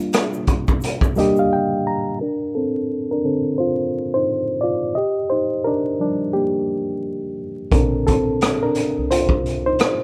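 Cosy and nostalgic, this lo-fi hip hop piece centres on a reedy, worn, slightly out-of-tune reed electric piano with a cassette-tape colour and a low-pass filter, which takes a solo under a filter sweep from 2.2 seconds. A grainy, very quiet egg shaker sounds only at the start. A punchy, gritty garage drum kit of hi-hat, kick and rim click plays briefly before a break, joined just before it by a woody, dark pizzicato upright bass, and both return together at 7.7 seconds. The whole rough home-demo mix sits in light reverb with vinyl crackle.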